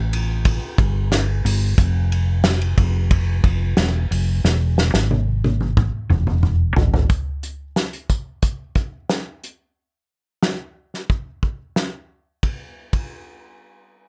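A dry recording with little reverb opens this dramatic, bittersweet pop excerpt, cut from a longer piece. A dark, round hollow-body electric bass sits up front with a punchy, amped tone alongside an acoustic drum kit played with bundle sticks in a small room, its fat snare and punchy kick prominent among hi-hat, ride cymbal and toms. The drums roll into a fill at 4.4 seconds, the bass drops out at 7.1 seconds, and the kit carries on alone until 13.1 seconds.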